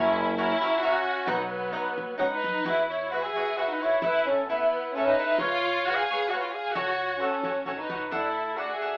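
A 3/4 pulse at 132 BPM in E major drives this festive, proud mariachi excerpt, cut from a longer piece, with a crisp picked cavaquinho accompaniment and a woody, thumpy pizzicato upright bass underneath. Up front, a lush bowed violin section carries the melody with vibrato, portamento and a soft attack, while a clear, classical-style solo trumpet plays a second line. The band plays live in one room with a wet studio reverb and an AM radio sound, moving from F#7 and B through Eadd9, Asus2, C#7 and F#m/C# to a closing D chord.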